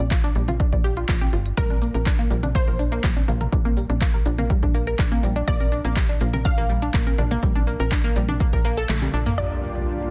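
The recording has a dense, heavily limited modern sound set in a digital ambience, and this uplifting, hopeful progressive house excerpt moves at 123 BPM in a straight 4/4, with chords moving from Bb6 to Gm/Bb and back. A nasal, detuned analog pluck carries the arpeggios with chorus, phaser, sidechain pumping and dub echo under a filter sweep, while a tight, driving sequencer bass of sawtooth and square waves with ring modulation pumps beneath it. A punchy, layered electronic kick and a deep house kit with smooth, low-pass-filtered hats, cabasa, handclaps and toms drive the groove, and electronic congas and toms sit in the background with a large-room character. From 1.6 s a lush unison pluck adds a melody with dub echo, and at 8.9 s the kick drops out as a drum fill and band accent arrive. At 9.4 s an electronic impact lands as a soft, airy supersaw enters up front with cassette tape colour and dub echo, followed at 9.6 s by an ethereal ambient pad with an octave-up shimmer and built-in reverb.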